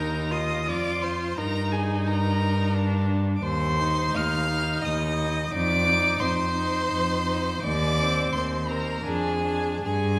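A rich cello stands up front in this slow, romantic movement for string quartet, its bowed bass line sitting low and present, smooth and even with vibrato. Above it, a single violin carries the melody high in its register, its warm, even tone set back at a distance, while a second violin plays a focused, close line beneath it. The viola fills the middle with a smooth, clear accompaniment until it stops at 9.8 s, just before the others finish. In 3/4 at around 76-90 BPM with a freely rubato feel, the music begins in E-flat major and turns to C minor from 3.4 s, giving it a solemn, yearning character. A wet scoring-stage reverb surrounds the quartet, and the passage is cut from a longer piece.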